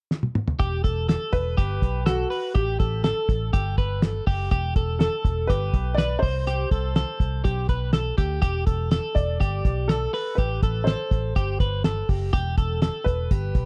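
A cloth-damped drum kit sits up front in this jangly indie pop excerpt, its thuddy, rolled-off sound built on a fat snare and tight kick, and it opens with a short fill before the guitar and bass arrive at 0.6 seconds. The mood is bittersweet and restless, moving at 123 BPM in a straight 4/4 in E minor, with chords cycling through Em, Gadd9, C5, Em7 and Am7 before settling back on Em. A bright, compressed twelve-string electric guitar plays clean picked arpeggios coloured by tape echo, while a vintage muted picked bass, foam-damped and round, holds down the low end. At 1.3 seconds an upright piano enters with the melody, its woody, intimate tone carrying audible action noise. Light reverb and a dark production give the whole piece a close, subdued character.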